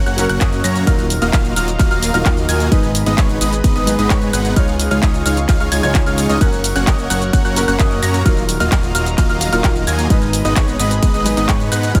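Festival progressive house at 130 BPM in a straight 4/4, this uplifting, anthemic excerpt is cut from a longer piece and cycles through F#, D#madd9, G#m and C#add9. A big-room dance kit of handclaps, hi-hat, ride cymbal and shaker enters at 0.1 seconds, joined at 0.4 seconds by a punchy, layered electronic kick that sits up front. A huge, detuned supersaw carries the riff with a thick, compressed sawtooth body, a sub octave and vibrato, while a fat analog bass adds saturated, evolving low end with a filter pluck. Further back, a soft felt-muted upright piano plays mellow, intimate accompaniment and a clear, slightly worn grand piano traces high arpeggios, both trailed by delay. A lush, bright unison pad holds sustained chords with a slow attack and long release, shimmering through chorus and phaser, and the pianos, pad, supersaw and bass all pump with sidechain compression inside a digital ambience.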